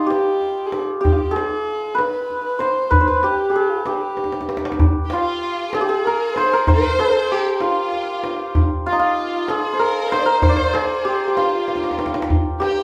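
A slow, unhurried 6/8 pulse at 64 dotted-quarter beats per minute carries this short excerpt of Persian modal ensemble music in G dastgah homayun, its mood longing and soulful. Up front, the santur leads the melody with a hammered, shimmering, ringing tone, while the tombak sits equally close with a tight, acoustic sound, marking fills at 4.2 and 11.7 seconds. Behind them, a dark kamancheh traces a second line with an airy bow, light vibrato, soft attack and gliding portamento, intimate yet set in the background. At 5.0 seconds, shortly after the music moves into its second section, a dark studio violin section joins with expressive vibrato, deepening the bowed texture. The players share one room, and a reverb of 0.8 seconds lends the whole ensemble a wet, lingering glow.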